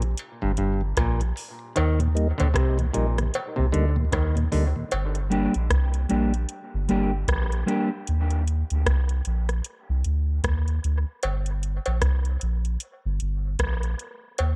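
A round, deep sub bass sits up front through this heavy, meditative dub reggae excerpt in G minor at 76 BPM with a swung sixteenth feel, carried alongside a dry, tape-warm vintage rhythm box of deep kick, metallic hats and rim click. A mellow tonewheel organ on slow rotary speaker and a stringy, overdriven clav riff open the piece with dub echo, alongside a cowbell that returns at 11.2 seconds, while a dark, clean, fingered electric guitar with analog chorus takes over from 5.3 seconds. The chords move between Gm and Eb in a dark production with light reverb and digital ambience.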